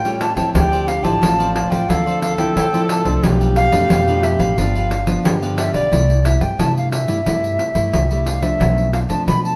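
This short cut from a longer piece sounds like a band playing live together in a moderate stone room, with a reverb tail of about 1.1 s and some lossy compression artefacts in the sound. It is a playful, joyful samba and choro at 89 BPM in 4/4 with a straight feel. The silver concert flute carries the melody with an airy, soft-attacked metal tone and vibrato, while a breathy tenor saxophone adds a mellow, jazz-style second line full of subtone and scooped notes. Underneath, a fingerpicked nylon-string guitar gives classical accompaniment and a woody, thumpy upright bass plays pizzicato on gut strings. A crisp, picked cavaquinho sits in the background, and a jingly, saturated pandeiro stands up front. The opening section moves through chords such as A7alt and Dm9; at 5.9 s the saxophone and cavaquinho stop and the music settles into C major on a C6 chord for the second section.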